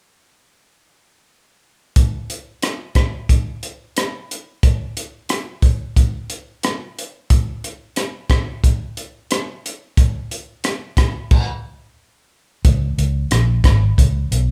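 A compact cocktail drum kit opens this dreamy, hazy indie and bedroom pop excerpt at 2.0 seconds with crash cymbal, hi-hat, a tight kick and rim clicks, sounding dark and smooth with a rolled-off top up front in a small room, then falls into a stop at 11.3 seconds before a round, foam-muted vintage fingered electric bass joins at 12.6 seconds, the band playing live together under light reverb.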